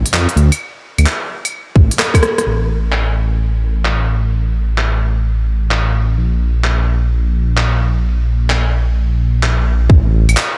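A rainy, wistful future garage excerpt at 129 BPM with a swung 16th-note feel, built on a dark, rumbling detuned saw bass that sits up front with tube saturation and sidechain pumping. A tape-warmed garage kit of claves, handclaps, crisp low-passed hi-hats and rim clicks runs throughout, joined by a tight, layered electronic kick at 1.8 seconds, just before a drum fill from 2.0 seconds leads into the next section at 2.5 seconds. The kick returns briefly at 9.9 seconds, and the mix stays dry and close with little reverb.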